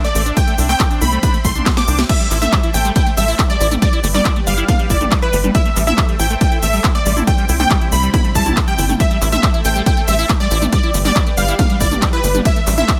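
A punchy analog kick drum sits up front from 0.4 s, driving this soaring uplifting trance excerpt at 139 BPM in A minor, where a nasal, tight sequencer bass pulses low, a layered techno kit adds cracking snare, smooth hats, claps, shaker, rides, crashes and toms, with a drum fill near 1.7 s, a squelchy, resonant acid bass spins phased arpeggios through dub echo, a detuned supersaw stab carries the chorused, delayed melody over a second tape-tinged supersaw line, and a silky string pad glows in the background, the synths and basses all pumping with sidechain over a dry, close sound and a C, Am, G, Am progression.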